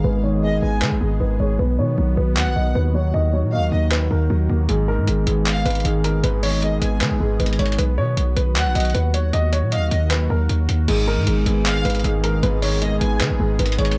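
Cut from a longer piece, this dark, small-room trap excerpt in G# minor sits at 155 BPM with a half-time feel, its eerie mood driven by a heavy, aggressive distorted 808-style bass up front and a gritty, overdriven boom bap sampler-style kit of crash, handclaps and hi-hat that enters at 0.8 seconds. A mellow, vintage dark grand piano carries the melody over a soft, boxy felt-muted upright piano with audible action noise, which drops out at 7.8 seconds and returns at 10.9 seconds for the closing section. A bright, detuned sawtooth pad with chorus holds sustained chords in the background, a filter sweep marks the opening break, and a lush bowed violin section with vibrato and delay adds a smooth, close second line above.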